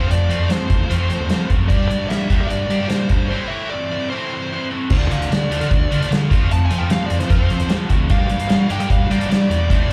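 Moody and restless, this indie rock excerpt at 150 BPM in 4/4 sounds like a live gig heard through the venue's PA, with club reverb around a loose acoustic drum kit that has dark cymbals and a punchy kick. A round, fuzz-driven fingered bass sits up front beneath a biting overdriven guitar riff in the background and a bright high-gain guitar riff colored by analog chorus and tape echo, moving through F, Gm and Am. After a break at 3.3 seconds, the dark fuzz lead guitar, soaked in plate reverb and slapback echo, takes a solo from 4.9 seconds over Dm, F and Gm.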